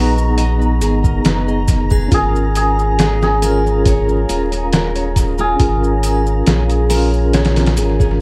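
A ringing, hammered cimbalom melody opens this smoky, cinematic trip hop excerpt over a clean tine electric piano with tremolo, a round sine sub bass up front, a moody, detuned analog pad with chorus in the background, fingerpicked nylon-string guitar arpeggios with audible finger squeak, and a flickering, granular texture, with tape echo on the cimbalom, piano and guitar. Maracas, triangle and group handclap slip in quietly at 0.2 s, and at 0.4 s a gritty, pitched-down sampler-style drum kit with a thumpy kick, medium-tuned snare and hi-hat lands up front. The harmony moves from G#madd9 to A#m7 in an echo-heavy mix dusted with vinyl crackle and light digital ambience.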